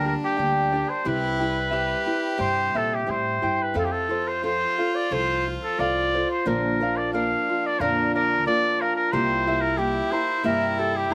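A clear trumpet leads this romantic, proud mariachi excerpt at 90 BPM in 4/4, singing the melody up front with a light vibrato and a classical poise over a chord path that moves from G minor through C, F and B-flat to C7. Beneath it, a soft, airy violin floats a pure second line with a slapback echo, while a small fingerpicked nylon-string guitar picks out the accompaniment and a bright Celtic harp rings out arpeggios. A woody, thumpy upright bass plucks gut strings underneath, and the whole group sounds dry and open, as if played outdoors, throughout the 11.1 seconds.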